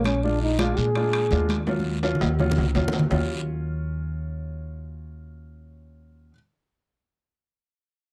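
Afro-Cuban jazz with a sultry, driving mood and a dry, close 1970s-style studio sound, cut from a longer piece. A breathy, whispered trombone carries the melody until 1.7 seconds, over a woody pizzicato upright bass set up front and an intimate baby grand piano whose action noise is audible, moving from Bb7 to Ebm7. Bright, high-tuned congas, ringing metal-shelled timbales and a raspy guiro drive the groove until 3.2 seconds, with a drum fill from 1.7 to 3.1 seconds, and piano and bass carry on alone to 6.3 seconds.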